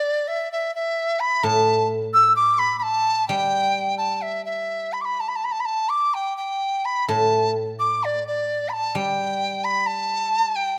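A large bamboo dizi carries the melody up front, its airy tone edged with a buzzing membrane, a crisp attack and vibrato, in this graceful yet festive passage of Chinese traditional music cut from a longer piece. From 1.4 seconds a guzheng played with fingerpicks joins beneath it in a low register, its silvery, ringing notes offering mellow accompaniment. The loose rubato feel around 64 BPM in 2/4 unfolds in a moderate concert-hall reverb, captured by close, detailed microphones.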